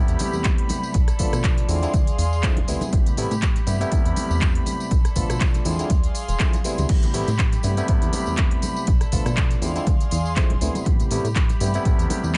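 A barky, lightly overdriven tine electric piano with phaser opens this groovy, funky filtered disco house excerpt alongside a gut-toned, reedy string section and a punchy, dark sawtooth bass with a filter pluck, all pumping to the sidechain over an Am9, Bm7b5, E7b9b13 cycle in A minor at 121 BPM with a 16th-note swing. The layered house kit with crisp hats, handclaps, rim clicks and crash arrives at 0.1 seconds, ringing tambourine and congas sit dry in the background from 0.2 seconds, and an up-front analog kick re-recorded in a small room lands at 0.5 seconds. The mix is close with little reverb and a dulled top end, giving the filtered groove a muffled sheen.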